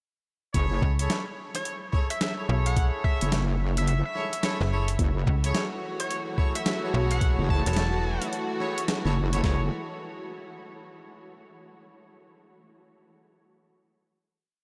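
This gritty, swaggering glitch hop piece opens straight into a drop at 0.5 seconds, riding a swung sixteenth-note feel and resolving onto a final chord at 9.4 seconds. Two compressed, sampler-style boom bap kits, re-recorded in a large room, drive it: an up-front one with a thumpy kick and medium-tuned snare plays a broken kick pattern, while a lower one carries a swung beat with edits on closed hi-hat and snares. Underneath, a heavy, detuned wobble bass with chorus and tube saturation works modulated phrases with changing wobble speed, and a snappy FM slap-like bass with a metallic attack answers it in chopped phrases. A distant, roomy horn section fires punchy, syncopated rootless chord stabs that pump against the sidechain and trail into analog delay. An edgy, tearing sync lead adds short answering phrases through chorus, cassette tape and delay, and from 5.0 seconds a dark, intimate chamber string section bowed sul tasto lays in a soft sustained pad. 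The whole mix is dreamy and soaked in a huge ambient reverb.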